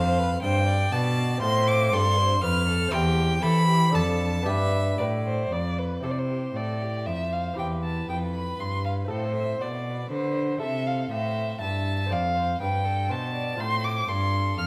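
Two bowed violins, a fingerpicked lute and a cello sound together from the start of this flowing, radiant baroque-style sonata movement in triple time, played with a rubato feel and cut from a longer piece. A focused, clear violin carries the melody with vibrato, while a second violin, placed up front, adds an expressive line with soft attacks and portamento. The delicate gut-strung lute, with its doubled strings, accompanies; a rich, smooth cello holds the bass near the front, and the ensemble sits in the moderate reverb of a recital hall.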